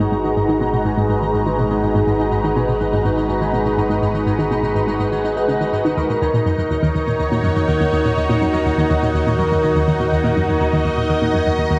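A lush, thick unison pad, bright and up front with chorus and phaser, opens this excerpt of ambient, sequencer-driven space music together with the rest of the ensemble, holding sustained chords that move from G#m7 to D#m7 at 6.0 seconds. A ringing concert harp plays arpeggios through a low-pass filter and delay, its tone shaped by a filter sweep across the full 11.8 seconds. Beneath it, a round, nasal analog pluck with a fast attack and short decay drives a riff in the low register, doubled out by chorus and delay. An evolving, warbling analog drone in a vintage, mellow vein anchors the bass, while a quieter pulsing gated texture, tempo-synced and detuned, shimmers in its own reverb. At 123 BPM in a straight 4/4 feel and G# minor, the echo-heavy mix sits in a wet plate reverb with a soft, rolled-off top, giving the music an expansive, cosmic mood.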